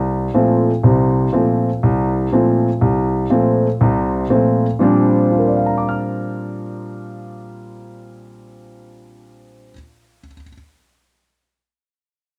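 This jazz piece for solo grand piano has an open, searching mood and moves in a swung four-beat feel. The piano sits up front and sounds intimate and natural, with audible action noise and a cassette-tape character that suits its home recording. Its range runs from the deep bass register up into the high treble, and the instrument is tuned a little below standard pitch, with A at 437 Hz. The harmony rests on an F chord at first, then shifts to a Bb6 chord at 4.8 seconds as a new section begins. A moderate spring reverb adds a gentle halo around the playing in this short excerpt, which is cut from a longer performance and ends at 10.5 seconds.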